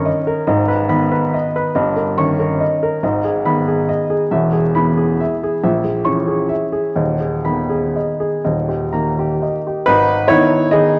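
A clear, woody upright piano plays solo and up front in this elegant, bittersweet classical waltz in G# minor, moving in a rubato 3/4 at 116-149 BPM, spanning D#1 to C#6 and tuned to A4 = 436 Hz. Its harmony passes from G#m through D#7/G, E and A#m7b5 to D#, then returns to G#m at 9.9 seconds as a new section begins, just before this 11-second cut from a longer piece ends. The polished tone sits in a moderate concert hall reverb with a 1.8-second decay, set against vinyl crackle.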